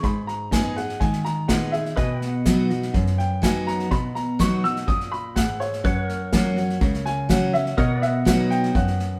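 A live band fills a moderate stone room, its reverb giving this short cut from a longer honky-tonk and classic country piece a down-home, nostalgic glow. A dark, woody upright piano with a mellow, vintage tone carries a solo across the whole passage. Up front, a full-bodied jumbo steel-string acoustic guitar picks out the accompaniment. Beside it, an airy acoustic drum kit played with bundle sticks pairs a punchy kick and a medium-tuned snare with hi-hat. A bright, clean pedal steel adds sustained, compressed slide chords with volume swells, while a rich bowed cello holds down the bass from a distance with smooth, even vibrato. The harmony rests on G#m before moving to F# at 5.8 seconds and settling on B at 7.8 seconds.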